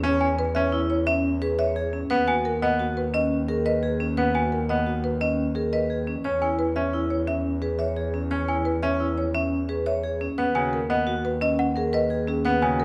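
Bright and hypnotic, this excerpt of minimalist classical pattern music moves at a brisk 174 BPM in 6/4 with a straight feel, set in E lydian. A brilliant, up-front grand piano carries the accompaniment in its middle register, while a metallic, ringing vibraphone struck with hard mallets spins arpeggios above it, its motor vibrato adding a shimmer. A bowed double bass, smooth and even with a gentle vibrato, holds the low end close up, and a delicate, bell-like celesta joins at 0.2 s with high arpeggios, its sweetness slightly out of tune. A woody marimba on rosewood bars enters at 0.4 s to carry the melody. The harmony alternates between E and Badd9 over D#, and the whole ensemble sits in a moderate recital hall reverb that lends the repeating patterns an airy glow.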